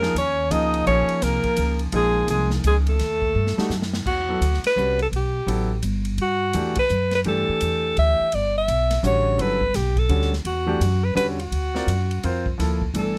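Modal jazz in a hypnotic, intense 3/4 swing at 169 BPM, cut from a longer piece, settling into E dorian from 4.1 s. A breathy alto saxophone with light vibrato carries the melody up front over a clear concert grand piano, a woody, thumpy pizzicato upright bass and a polished big-band drum kit with punchy kick. A bright, distant trombone adds a second line only until 3.9 s, a drum fill leads into the new section, and a band accent lands at 6.7 s, all captured dry with close, detailed microphones.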